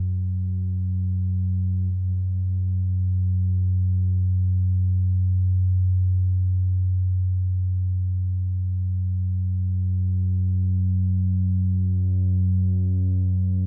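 Ominous and unsettling, this free-time ambient fragment, tuned to A4 = 441 Hz, features a solo deep drone spanning F#2 to F#3 that rumbles and warbles with a dark, vintage blend of triangle and sawtooth tones, slow attack and long release, sitting up front with tape echo inside a cathedral reverb that rings for 5.7 seconds, and the piece moves into a new section at 1.9 seconds before running to 13.7 seconds.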